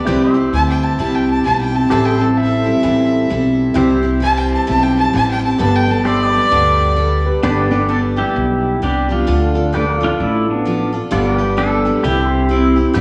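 A biting, airy-bowed fiddle solo opens this sunny, heartfelt swung honky-tonk and classic country excerpt over a very quiet, slightly detuned upright piano, a bright, full-bodied picked dreadnought acoustic guitar with finger squeak, clean pedal steel guitar swelling into sustained chords, and a thumpy, woody pizzicato upright bass up front, until at 7.4 seconds the fiddle and piano stop and a twangy second pedal steel takes the melody, all of it wrapped in a wet recital hall reverb and the warbling pitch drift of worn old cassette tape.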